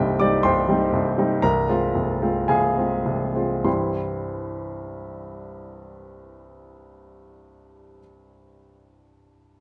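Rubato 4/4 pulse that slows over the opening 3.7 seconds gives this short cut from a longer classical virtuoso piano study a stormy, agitated mood. A clear, polished baby grand sits up front as the only part, ranging from C1 to D6 across its 9.6 seconds under light reverb. The harmony moves from C minor through F minor over C before arriving on a C major chord at 3.7 seconds, where the second section begins.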